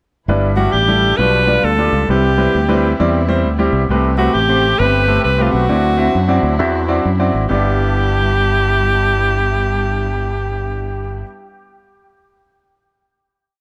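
Piano, strings and bass open together at 0.3 s in this short, uplifting uptempo gospel piece in G major at 133 BPM with a swung feel: the brilliant concert grand plays rhythmic drop-2 chords with deep bass and dub echo, the fingered electric bass walks and runs, round and punchy up front with slides and chromatic approach notes, and the lush bowed string section holds a warm, smooth-topped pad in the background. At 0.6 s an edgy, forceful alto saxophone joins up front with vibrato and dub echo, spinning a hopeful, motif-based pop-style melody. The breakdown moves through G6, G7/B, Cmaj7, Am9 and D9 before settling on a final G6 chord at 7.5 s, all in an echo-heavy mix with moderate spring reverb.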